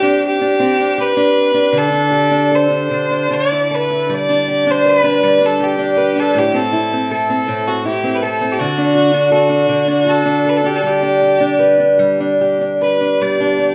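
Celtic folk slow air in G major and 3/4, drifting in a rubato feel at around 73-82 BPM, with a nostalgic, tender mood. A single rich fiddle with light vibrato carries the melody, while an up-front, bright and boxy parlour steel-string guitar fingerpicks the accompaniment through chords like Csus2, Dsus4, Am and D, its fresh strings adding finger squeak. At 13.2 s a mellow French horn section slips in with sustained classical-style chords just as this excerpt ends, all set in a moderate recital hall reverb.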